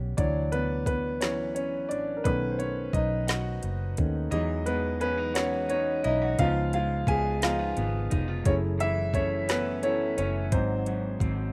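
A concert grand piano with a deep, natural low end opens this slow, yearning R&B excerpt in 6/8 at 58 BPM in C# minor, carrying the lead from the very start over chords moving from Dmaj7 and B7 through Emaj9 and C#7 to F#m7 and G#7. A dark, round electric bass with a foam-muted, punchy tone sits beneath it, while a produced electronic drum kit, up front with a soft kick, woody snare, metallic hats and a tape-warm sheen, settles in with hi-hat, kick and snare. At 4.3 seconds an electric guitar enters as a second line, picked with a dark, slightly broken-up edge and touched by slapback echo, and at the same moment the kick drops out until 6.4 seconds. The sultry mood is helped by a close, dry sound with little reverb, giving the whole a rough home-demo feel.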